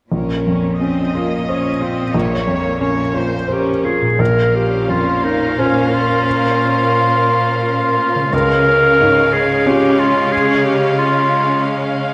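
A bright, soft-attacked clarinet sits up front from 3.5 seconds, carrying a sorrowful, moving second line in this cinematic excerpt in a rubato three-beat feel. Beneath it, a muted, intimate felt piano with audible action noise plays throughout alongside a smooth, even viola section and a clear cello section holding the bass. A distant, focused violin section adds its own second line from 4.2 seconds, a thumb-plucked harp rings arpeggios in the background, and the harmony moves from Bbmadd9 to Db at 8.3 seconds, all inside a wet scoring-stage reverb.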